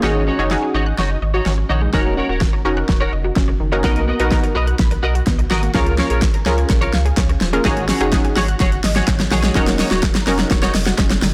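A punchy, layered electronic pop drum kit sits up front in this upbeat, carefree dance-pop excerpt at 126 BPM in a straight 4/4, with a fat snare and bright hats carrying a drum fill through the whole 11-second build-up. Underneath, a round sine sub bass holds the low end with sidechain pumping, while an analog pluck with a warbling, detuned vintage character and chorus also breathes with the sidechain as it provides the accompaniment. A twangy, clean twelve-string electric guitar plays a compressed, picked riff through an ensemble chorus. Set further back, a lush unison pluck spins arpeggios across a broad register, shaped by sidechain pumping and a digital delay. A very quiet, close and dry group handclap joins at 6.2 s, and the changes move through Ab7sus4, Ebm7, Cbmaj7 and Db6 under light reverb and a blown-out, overdriven finish.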